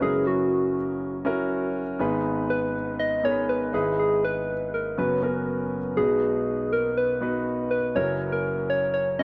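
Pop with an anthemic, hopeful lift, this short fragment sets a gentle, keys-like FM synth lead carrying the melody through a chorus shimmer against a clear, intimate concert grand piano whose deep bass, long sustain and audible key action sit up front, the whole mix bathed in moderate plate reverb and the worn, warbling pitch drift of old cassette tape.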